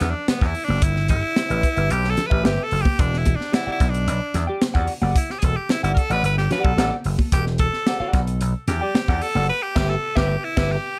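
A raspy, forceful tenor saxophone solos up front through this hypnotic funk excerpt, opening on a brief break over a punchy vintage slap bass and a crisp fusion drum kit with a high-tuned snare, while bright, damped congas sit in the background, a dark, clean electric guitar with analog chorus joins at 1.5 seconds, and a band accent arrives at 9.5 seconds under light reverb.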